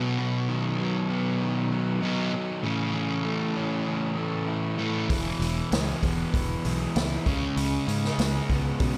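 Set in a big arena sound with moderate stage reverb, this swaggering, confident classic rock excerpt opens with two overdriven electric guitars, one of them sludgy, picking up-front riffs over a chord progression moving from B to A, before a punchy fingered electric bass and a vintage acoustic drum kit with a rolled-off top, hi-hat, punchy kick and snare join at 5.1 seconds.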